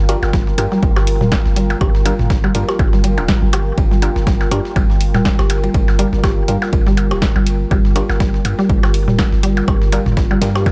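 Quirky and sparse, this minimal techno excerpt rides a swung 4/4 groove that sits on a single Gm7 chord throughout its roughly 10.7 seconds. A punchy electronic kick anchors the mix from 0.3 seconds, joined by a punchy analog drum machine's hi-hat and snare, a gritty, compressed sampler-style kit of hats, ride and snare tucked in the background behind high-pass filtering, and overdriven electronic percussion blips and toms trailing dub echo. Underneath, a deep sine sub bass with a pitch-drop attack pumps with sidechain, while a moody, mellow ambient pad with a sub octave drifts through chorus and its own reverb, also pumping. The standout is a juicy, squelchy resonant pluck riff, detuned and chorused, its short filtered notes scattered by dub echo. Dark, crisp wavetable chord stabs with unison detune sit farther back, trailing dub echo, all set within a digital ambience, with the drums re-recorded in a small room.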